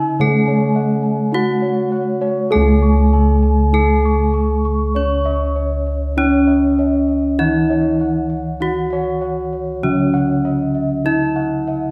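Heard from further back in a reverberant recital hall, this short section cut from a longer Javanese gamelan piece has a shimmering, ceremonial mood in a straight 4/4. A bronze metallophone struck with a horn mallet carries the bright, ringing melody up front. A second metallophone played with padded disc mallets gives mellow, soft accompaniment below it, its paired tuning producing shimmering beats. Higher up, round, beating bossed gongs and an airy metallophone in the background play arpeggios, while dark, smooth bossed gongs hold the bass, and the music moves into a new section at 2.5 seconds.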